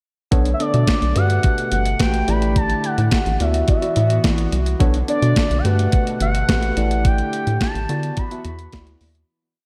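A four-on-the-floor beat from a clean, thumpy 12-bit drum machine and a fat, rubbery square bass line with chromatic approach notes drive this slick, danceable early-eighties boogie funk piece at 107 BPM, as a worn, slightly out-of-tune tine electric piano plays syncopated chord stabs, a shimmering pulse-width pad holds Bm9, Gmaj9, A7sus4 and D69 chords in the background, and a smooth, warbling portamento lead with vibrato, chorus and analog delay sings short call phrases, the mix soaked in a dreamy hall reverb before fading out from 7.0 seconds.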